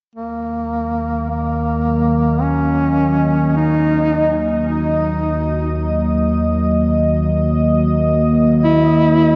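Moving at a slow, straight 53 BPM in 4/4, this cavernous dark ambient drone in Eb minor, cut from a longer piece, sets a mellow duduk singing a folk-style solo with vibrato and scooped notes through shimmer reverb and delay over a resonant, wave-folded sweeping pad with chorus and phaser and a warbling vintage analog drone that enters at 0.5 seconds, all held on Ebm in a vast cathedral-like space.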